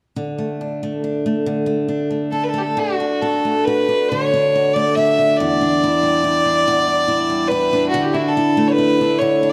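In a loose, rubato 6/8, this tender, pastoral Celtic slow air opens at 0.2 seconds with a warm, picked steel-string acoustic guitar laying down the accompaniment. A single bowed fiddle takes the melody from 2.3 seconds, its clear, earthy tone touched with light vibrato, as the harmony moves from D through Em7 to Dsus2. Both parts sit up front in a dark production, wrapped in the moderate reverb of a concert hall, and the passage is cut from a longer piece.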